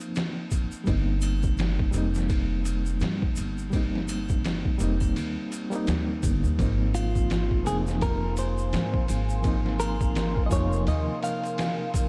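A brooding trip hop fragment opens at once on a muffled, pitched-down sampler-style drum kit, its thumpy kick, medium-tuned snare and ride cymbal overdriven and pushed up front with a lazy swung feel. Alongside it, a reedy electric piano plays accompanying chords through fast tremolo, harmonic tremolo, light overdrive and tape echo, while a close acoustic tube shaker and triangle sit low in the mix. At 0.9 seconds an up-front pizzicato upright bass joins, its woody steel-string tone thickened by tube saturation as the harmony settles onto a minor seventh chord. Near 6.9 seconds a clean, fingered electric guitar takes the melody, compressed and softened by spring reverb and tape echo. Shortly after, around 7.4 seconds, a deep, detuned sawtooth pad with chorus fades in slowly above it to hold sustained chords. The whole production feels dark, melancholic and enveloped in digital ambience.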